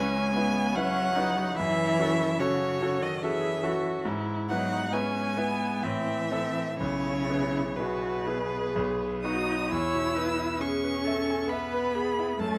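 Tender and serene, this excerpt from a slow romantic movement for piano quartet unfolds in E major at 61-74 BPM in 3/4, its rubato feel lending the phrasing a gentle, breathing flexibility. A rich violin carries the melody from B4 to E6, sung with vibrato and expressive portamento, while a cello, soft in attack and equally expressive with its own vibrato and sliding portamento, shapes a second line beneath it. A clear, focused viola and a bright, brilliant concert grand piano with deep bass supply the accompaniment, all four playing throughout the 12.6 seconds. The harmony drifts through C#m7, F#m7 and E/G# before a poignant turn to Am, settling via E/B and B onto E as a new section begins at 9.7 seconds. Close, detailed microphones capture the players in a moderate recital hall reverb, with the violin and piano standing up front and the cello sounding distant.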